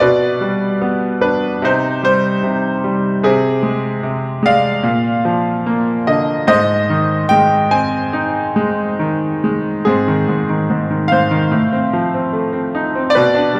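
Rubato phrasing in 4/4 shapes this calm, peaceful classical excerpt for solo concert grand piano, whose brilliant, worn tone carries a deep bass and sits up front in a lush hall reverb, moving through lyrical chords before turning to a new section at 9.9 seconds.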